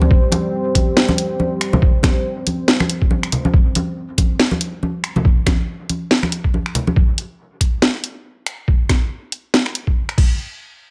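A brooding, cavernous deep dubstep excerpt moves in a half-time 4/4 feel at 140 BPM, with swung 16ths and tuning at A4 = 438 Hz. An up-front, gritty, pitched-down sampler kick thumps alongside a layered electronic garage kit of cracking snare, hi-hat, finger snaps and crash cymbal, while close, dry, ringing congas carry a dub echo until 6.9 seconds. A dark, detuned sawtooth pad with a sub octave sustains a C5 chord through chorus and reverb, ending at 3.5 seconds, all set in a digital ambience.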